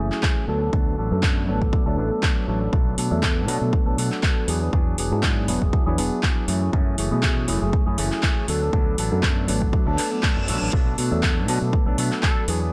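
A swung 120 BPM groove in 4/4 drives this nostalgic, funky filtered disco house clip in B dorian, with a punchy, up-front electronic kick under a tape-warm house kit of handclaps and metallic hi-hats, while a bright, fingered electric bass with tube saturation moves through chords from D6 and Bm7 to E9 and F#m9. A bell-like tine electric piano with phaser plays accompaniment and a dark, compressed electric guitar with an envelope filter and warbly pitch drift carries the riff, the piano, guitar and bass all pumping and passing through a filter sweep across the whole clip. A reverse cymbal rises at 10.0 seconds, and a nasal, straight-muted trumpet section sounds briefly in the background at 12.2 seconds, all in a dry, close mix.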